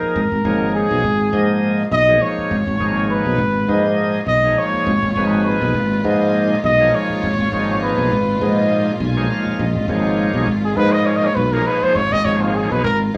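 Driving and slick, this swung jazz piece at 102 BPM in G# dorian rests on a G#m69 chord as a mellow, close-miked trumpet solos up front with vibrato and scooped notes over a growly fretless electric bass, alongside a bright, reedy tonewheel organ with key click and slow rotary speaker that adds a fill at 8.7 seconds and a lush bowed string section that enters softly in the background at 0.4 seconds, with the band heard live in a small room with wet reverb.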